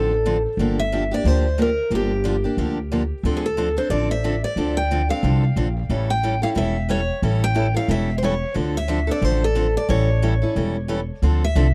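A swinging 4/4 pulse at 181 BPM drives this fiery excerpt of acoustic string swing in D minor, cut from a longer piece, with a picked steel-string acoustic guitar carrying the melody through a tape echo over a second picked steel-string guitar's accompaniment. The lead guitar sounds bright and boxy, while the accompanying guitar has fresh strings and audible finger squeak, and a woody, thumpy upright bass with gut strings sits dark and up front beneath them. The chords cycle through Dm7, Gm7 and A7 in a dry, close 1970s-style studio sound with little reverb.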